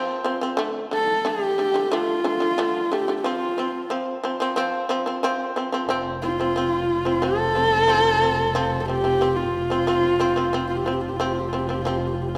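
A wet, roomy reverb surrounds this short Mongolian folk excerpt, which has a proud, galloping mood. A bright, buzzing shamisen opens with up-front plucked arpeggios, and at 0.9 seconds a husky horsehead fiddle joins close and intimate, carrying the melody with vibrato, portamento and an airy bowed tone. From 5.9 seconds a boxy, focused double bass adds a low bowed drone underneath.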